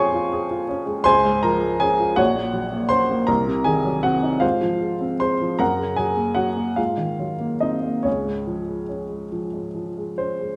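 A 6/8 pulse, pushed and pulled by rubato, carries this passionate romantic character piece for solo piano, where a woody, intimate upright sits up front with its audible action noise inside a wet recital hall reverb, moving through a warm chord progression that settles home on the tonic by 8.1 seconds in this brief excerpt cut from a longer work.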